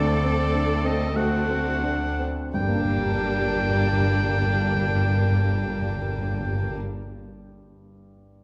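Tragic and brooding, this short slice of a romantic movement for piano and orchestra unfolds in a rubato triple metre, slowing through its opening 2.5 seconds as a D7 chord resolves onto G minor. The grand piano carries the melody with a present, polished tone across a range from D2 to Bb4, though it sits somewhat in the background. A close, intimate chamber violin section shares the melody with light vibrato and a soft attack, while a bright solo oboe sings a second line above, joined by a smooth, even studio violin section tucked behind it. Beneath them, a rich chamber viola section adds expressive accompaniment with vibrato and portamento, and the bass is anchored by a rich chamber double bass section alongside a lush, very quiet symphonic cello section. Timpani struck with hard mallets on calf heads sound articulate and dry from the back of the mix, and the orchestra falls away at 6.8 seconds, leaving the piano alone until 8.4 seconds in a dark, warm scoring-stage ambience touched by a faint mains hum.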